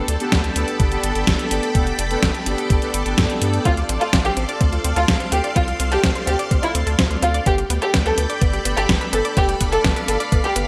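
Nostalgic and bittersweet, this short cut from a longer italo disco track moves at 126 BPM in a straight 4/4, built on a Gadd9 to Dm7 and back to Gadd9 progression. A lush, vintage string machine holds sustained chords throughout, shimmering with ensemble chorus, while a round, deep analog bass with a nasal edge anchors the low end. A thumpy electronic kick and a clean 12-bit drum machine carry the beat, the machine's fat snare and hi-hat sitting up front in gated reverb. Bold, brassy analog synth stabs with chorus and digital delay open the passage and stop at 3.6 seconds, after which a dark, woody studio violin section takes the melody with vibrato and digital delay. At the same moment, at 3.7 seconds, a quieter analog pluck adds arpeggios colored by chorus, cassette tape and delay. The whole sits in a moderate plate reverb with a bright, 1980s-style digital sheen.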